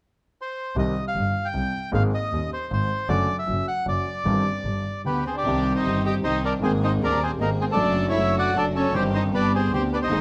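Set in a large studio with a moderate reverb, this melancholic, passionate tango fragment moves in a rubato 3/4 at 154 BPM in C minor, tuned to A4 = 439 Hz. A reedy, vintage bandoneon with a band-limited tone carries the melody up front from 0.4 seconds. At 0.8 seconds it is joined by an intimate, polished concert grand piano, whose deep bass, long sustain and audible action noise sit close. A clear double bass enters at the same moment, bowed by one player with smooth, even vibrato. The harmony cycles through Cm, Abadd9, D/F# and Cm/G before settling toward G. From 5.1 seconds a violin section with gut-string tone and light vibrato adds a period-style second line in the background, and at 5.4 seconds a very quiet, rich string ensemble begins contributing soft-attack, floating stabs.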